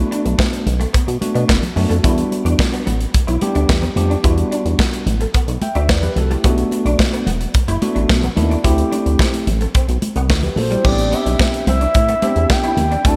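Danceable and late-night, this early-eighties boogie funk cut moves at 109 BPM in E minor, with a glossy, nasal chorused synth bass and a punchy, airy studio drum kit with bright cymbals sitting up front while a clean tine electric piano, a dark, slightly broken-up guitar riff with ensemble chorus and very quiet, damped high-tuned congas fill out the groove over chords moving from Bm7 and Em7 to D9sus4. At 10.6 seconds, just before the harmony shifts to Am11, a smooth, gliding portamento lead with vibrato, chorus and a diffuse ambient delay enters. The whole mix is dreamy and soaked in lush hall reverb, with a faint mains hum underneath.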